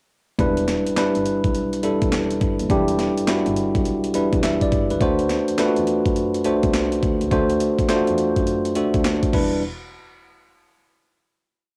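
A home cassette recording with a light reverb carries this punchy, confident new jack swing piece in E minor at 104 BPM, its hard-swung sixteenths moving between Em7 and D7. Up front, a bell-like, bright tine electric piano with a tape character pushes drop-2 chord voicings, adding grace notes and short fills. A gritty, overdriven sampler-style drum kit with a thumpy kick and a snare layered with handclaps drives the beat alongside hi-hat and crash, while a pure, distant bowed double bass floats in the background with a bouncy synth-funk line and chromatic approach notes, leading into a final hit from 9.6 to 11.8 seconds.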